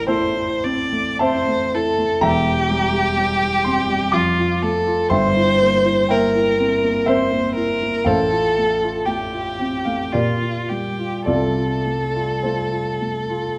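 A romantic classical duo in F major and 3/4, this lyrical fragment moves slowly at 49-64 BPM with a flexible, rubato feel, as a rich, bowed solo violin sings the melody with expressive vibrato and portamento. A dark, mellow baby grand piano with short sustain accompanies it throughout, both instruments sitting up front within the generous reverb of a recital hall. The harmony glides from A minor through C7 and F to a closing F over C.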